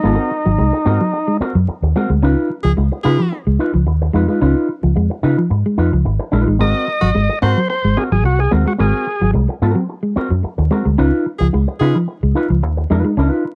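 Playful and energetic, this straight-feel 110 BPM funk excerpt in Ab mixolydian (tuned to A4 = 436 Hz) rides on a round, punchy, foam-muted electric bass up front, a dark, clean fingered guitar riff and a bright, twangy envelope-filtered guitar with vibrato over Ab9 and Db9 chords, while a thick, gritty overdriven tonewheel organ with key click states the melody from 0.0 s and again at 6.6 s, and an edgy tenor saxophone adds brief scooped, vibrato phrases, all captured in a dry, close 1970s-style studio sound with vinyl crackle.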